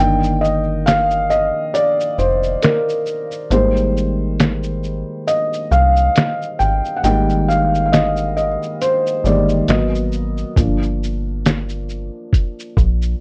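Lo-fi hip hop at a relaxed 68 BPM in F dorian, reflective and melancholic, with a gentle 16th-note swing, cut from a longer piece and carried by a soft, felt-muted upright piano whose intimate tone, audible action noise and cassette-tape grit hold the spotlight throughout. Beneath it sits a dark, metallic FM bass with fast, decaying notes, while a muffled, pitched-down sampler-style kit of thumpy kick, medium-tuned snare, hi-hat, shaker and finger snaps enters at 0.2 s. The harmony drifts from F13sus4 through Fm11/Ab to Abm7 and Gm7, all framed by moderate studio reverb and the warbly pitch drift of worn old tape.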